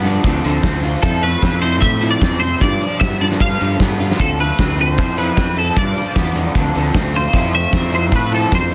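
A bright, twangy twelve-string electric guitar carries the melody through ensemble chorus in this restless, bittersweet indie rock excerpt, over a lo-fi, slightly broken-up riff with phaser from a guitar through a small old amp in the background, a second overdriven guitar riff bathed in lush chorus, a dark, round fuzz bass, and a loose, roomy drum kit up front with a fat snare and tight kick, as the band cycles through Dm7, Fmaj7 and G7 in a dense, heavily limited mix with studio reverb.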